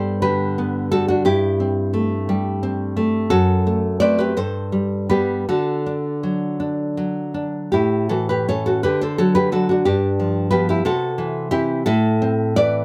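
A light reverb gives this short recording a gentle sense of space around a single nylon-string guitar, placed up front and sounding full-bodied and deeply classical. It is a romantic solo piece in 6/8, played with a free, rubato feel and a warm, nostalgic mood. The fingerpicked acoustic guitar carries everything alone across its 12.8 seconds, ranging from F#2 up to D5. The harmony moves from G through Am7/G and a shadowy F#dim back home, then turns toward D and A7 before G7 at 9.9 seconds leads on to C and Am. Cut from a longer work, the passage closes on that Am chord.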